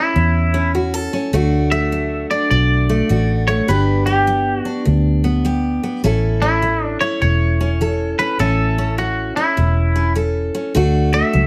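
Lightly reverberant and up-front, this easygoing, nostalgic honky-tonk and classic country excerpt swings along as a clean, twangy electric guitar with a subtle chorus carries the melody over a full-bodied, picked dreadnought acoustic guitar and a dark, round, foam-muted fingered electric bass that enters at 0.2 seconds.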